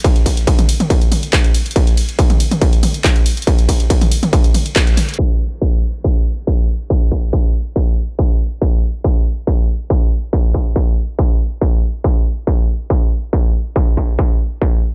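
This dry, low-pass filtered techno excerpt, cut from a longer piece, sounds intense and relentless at 140 BPM in a straight 4/4. A distorted, layered electronic kick sits up front for the whole passage, re-recorded in a large room and driving the groove on its own once the rest drops away. For the opening drop, a punchy analog drum machine adds overdriven crash and ride cymbals, handclaps, hi-hat and toms, its hats, toms and cymbals pumping from sidechaining and muffled by low-pass filtering. A band accent lands at 4.8 seconds, and the drum machine stops at 5.3 seconds. A filter sweep then runs through the rest of the excerpt, leaving the gritty kick to carry the beat until it ends at 14.7 seconds.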